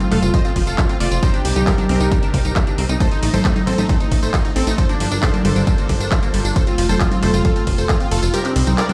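Heard through a big sound system in a bare room and bathed in a large studio reverb, this short cut from a longer uplifting trance piece moves at 135 BPM in a straight 4/4 with a soaring, bittersweet mood. A punchy, up-front electronic kick enters at 0.3 s and stops at 8.0 s, while a layered techno drum kit of congas, handclaps, metallic hi-hats, ride cymbal and tambourine runs throughout, both re-recorded in a small room. Underneath, a funky, wave-folded analog bass plays with a fast filter pluck in the low register, and a squelchy, resonant liquid acid bass plays arpeggios in the background through lush chorus and digital delay. Above them an airy, detuned supersaw stab carries the melody with an evolving filter sweep, cassette tape colour and digital delay, while a dark, veiled con sordino string section holds bowed chords with vibrato and a soft attack. Sidechain pumping breathes through the stab, strings and both basses as the chords move from F to Cmadd9, Adim and Gm7, then back to F and Cmadd9.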